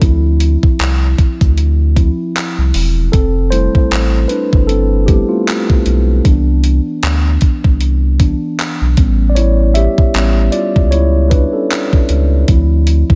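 A mellow tine electric piano takes the lead in this romantic, dreamy contemporary R&B excerpt at 77 BPM with a 16th-note swing, moving through Dm7, Fmaj9, Cmaj7 and A7 over a deep, thick saturated sub bass and a thumpy, tape-tinged 80s digital drum machine of handclaps, hi-hat and kick wrapped in gated reverb, all set in a digital ambience.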